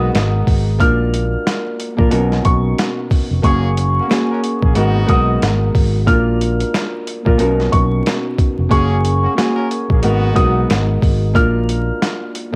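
A ringing, fingerpicked Celtic harp sits up front in this nostalgic boom-bap hip-hop cut at 91 BPM with a swung 16th-note feel, joined by a dark, round fingered electric bass and a gritty, pitched-down sampler-style drum kit with a thumpy kick and medium-tuned snare, while a woody upright piano carries a smooth, high melody and a clear jazz-style trumpet section adds stabs with light vibrato and tape echo until 10.8 s, the music cycling through G#m7, A#, Bmaj7 and F#add9 in a cassette-coloured home recording with vinyl crackle and light small-room reverb.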